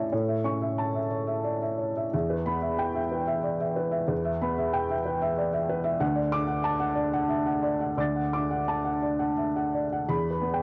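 A felt-muted upright piano plays alone throughout this short passage from a longer neoclassical minimalist piece, its dark, boxy tone sitting close and intimate, spanning from D2 up to A6. The reflective, melancholic mood moves in a rubato 3/4 at roughly 84-97 BPM, tuned to A4 = 441 Hz, with the harmony shifting from A to Em, then D, and back to Em at 10.1 seconds. Light reverb and the character of a home cassette recording frame the playing.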